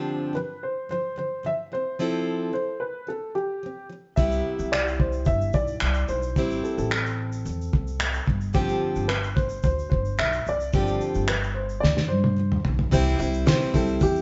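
A dark, mellow, slightly detuned upright piano carries the melody over a picked plugged-in steel-string acoustic guitar with audible finger squeak in this easy-going, sunny acoustic pop excerpt at 110 BPM, with a woody pizzicato upright bass and a muffled, gritty, lo-fi cloth-damped drum kit with a fat snare, finger snaps and shaker joining at 4.2 seconds, a drum fill at 11.8 seconds, and a jingly, very quiet tambourine arriving at 12.9 seconds as the chords settle on C, all heard in a moderate stone room with the band playing live and nothing above 7.8 kHz.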